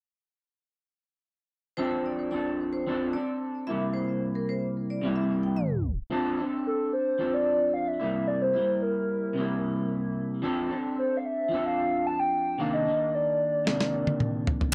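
Nostalgic and hazy, this indie and bedroom pop fragment opens with a twangy, slightly broken-up electric guitar steeped in lush chorus and vibrato alongside a ringing, metallic vibraphone second line, then after a tape stop at 5.6 s a hollow, woody clarinet-like synth lead takes the melody, before a gritty, compressed sampler-style drum kit enters with a snare-and-tom fill at 13.7 s, all captured in a dry, close 1970s-style studio sound.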